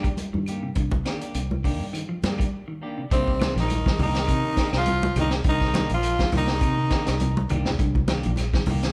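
Intense and funky, this short afrobeat excerpt in C minor at 102 BPM rides a swung groove from a punchy, high-tuned vintage drum kit, a dark, round fingered bass, ringing congas, faint woody claves and two clean picked guitars, one playing arpeggios through spring reverb and one adding stabs over a Cm9 chord, until a break at 2.5 seconds opens the way for a raspy, gritty tenor saxophone melody, joined lower by a smoother second sax line, from 3.1 to 7.5 seconds, all captured live in one room with light reverb and lossy compression artefacts.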